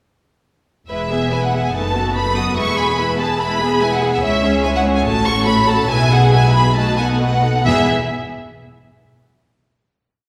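At 0.9 s the full string orchestra enters together in E major, opening a quick, graceful and spirited classical-period movement at 142 BPM in 4/4, its beats pushed and pulled with rubato. The first violins carry the melody up front, a lush bowed line with vibrato and soft attacks, shaped expressively. Beneath them the warm second violins and the focused violas share a rocking two-note figure and sustained chords, while the smooth, even cellos hold a sustained bass in the background. The distant double basses double the bass line with vibrato. The theme closes on a final chord at 7.6 s, which hangs in the reverberant acoustic of a church or concert hall.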